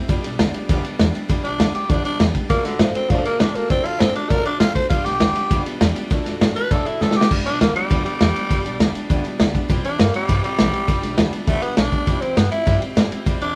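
Rockabilly with a retro, upbeat drive, this short excerpt sets bright, picked steel-string acoustic guitar and a woody, thumpy pizzicato upright bass under a muffled, lo-fi vintage drum kit up front, and a raspy, growling tenor saxophone joins them to take the close-miked solo melody from 1.4 seconds, with a drum fill at 7.0 seconds ushering in the repeat, all captured as a band playing live in one room with light reverb.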